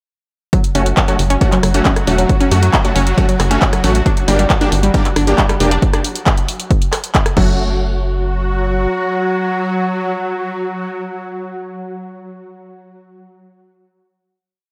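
A dreamy, reverb-soaked mix with a moderate plate sets the space for this relentless, industrial piece of driving peak-time techno at 136 BPM in straight 4/4, centred on F# phrygian. An up-front, tape-warm analog kick pounds four-on-the-floor from 0.5 seconds alongside a punchy drum machine laying down programmed closed and half-open hats, claps, rim clicks and crashes, with sidechain pumping on its hats and cymbals. A tight sequencer bass in off-beat sawtooth and square-wave plucks sits firmly up front, while a round analog pluck runs a bright, detuned 5-step loop that drifts against the bar, coloured by ring modulation, a filter sweep, chorus and tape echo. Aggressive, thick rave stabs fire dotted-rhythm chords in one shape moved in parallel, shifting from F#m to Gm and back, and a swarming, granular sine drone swells in slowly beneath, tense and evolving. After the drop ends at 7.6 seconds, the final hit lets the drone hang until 11.9 seconds and the stabs until 12.2 seconds.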